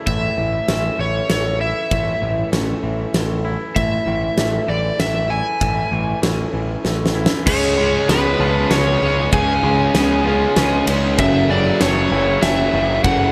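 Moving in a straight three-beat lilt, this cinematic, cathartic post-rock passage is cut from a longer piece. Two tape-echoed guitars spin arpeggios in the background: one lo-fi and slightly broken-up through a small old amp, the other clean, fingered and twangy. Up front, an overdriven slide guitar played with fingerpicks carries the melody, also washed in tape echo. Beneath it, a growling picked electric bass, bright and overdriven, sits forward in the mix, while a huge arena drum kit brings a fat snare, punchy kick, ride and crash in a big room. A drum fill at 6.8 seconds leads into a new section at 7.5 seconds, where two distorted, picked guitars join with a riff, one of them compressed, glinting behind the rest as the harmony moves from C#7 to F#m7. Light reverb and a small room ambience frame the sound.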